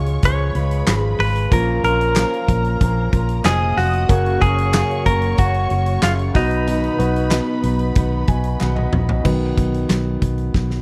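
A bright, twangy clean electric guitar carries the melody up front, its compressed, direct tone touched with spring reverb, over a round, foam-muted electric bass and an arena drum kit with a punchy kick, a fat snare, crash cymbal, toms and handclaps in this uplifting, piano-driven pop excerpt. A concert grand piano with audible action noise, deep bass and long sustain provides the accompaniment, while a lush, vibrato-rich violin section adds a smooth second line, a dark, full-bodied steel-string acoustic guitar picks a riff in the background, and a very quiet, hollow group handclap joins at 0.9 seconds. The recording is dry and close in a 1970s studio style, and after a piano fill and a drum fill, the grand piano takes a solo from 9.3 seconds over the bass and drums.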